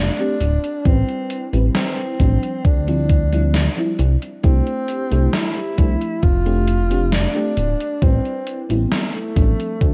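Through a cassette-tape haze and light reverb, this dreamy, woozy vaporwave excerpt drifts at 67 BPM in 4/4 over F69, Am7, Dm11 and C6 chords: a breathy, whispered tenor saxophone carries a vibrato-laden, subtoned jazz melody through tape echo above a lush, detuned FM electric piano and soft pad layer roughened by chorus, 12-bit sampler grit and echo, while a glossy, up-front chorused synth bass anchors the low end, a gated 80s drum machine with hi-hat, gated-reverb snare and tambourine, overdriven and re-recorded in a small room, joins at 0.2 seconds, and a thumpy, overdriven electronic kick arrives at 0.9 seconds.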